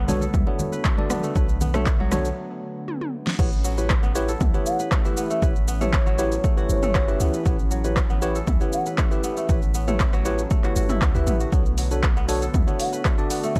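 Warm and earthy, this afro house excerpt at 118 BPM pairs fingerpicked kora arpeggios with analog delay, a worn tine electric piano throwing out stabs, a boomy tube-saturated 808-style bass, a lush chorused analog pad pumping in the background, and a punchy overdriven electronic kick with a fat-snared deep house kit. Bright congas play only until 2.2 s, a drum fill closes a short break into the drop at 3.4 s, and an airy, hollow bansuri floats a melody in the background from 4.7 s over a dry, gritty mix moving from Bm7 to A7.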